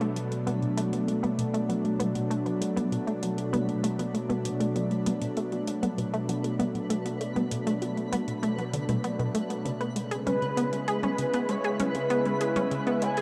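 A thick, detuned sawtooth pad, a round, chorused analog pluck riff with delay, and a booming analog drum machine with metallic hats and toms open this expansive, cosmic stretch of sequencer-driven ambient space music, with a sparkling granular shimmer fading in from 0.4 seconds and a smooth, mellow portamento lead with vibrato arriving at 10.3 seconds, just after the harmony moves from Bm7 to C#m7, all steeped in a huge, drenched reverb and the grain of cassette tape.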